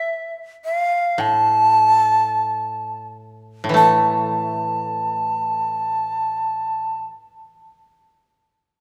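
In a free, rubato 4/4 hovering between 44 and 61 BPM and slowing through the opening 3.8 seconds, this still, austere passage of Japanese traditional chamber music is cut from a longer piece. An airy, bright bamboo shakuhachi carries the melody up front from the first moment, its straight, tongued tone showing a distinct chiff and lifted highs as it moves expressively between E5 and A5. A woody, fingerpicked koto enters low at 1.2 seconds with dry, quiet accompaniment, all set in a moderate concert-hall reverberation.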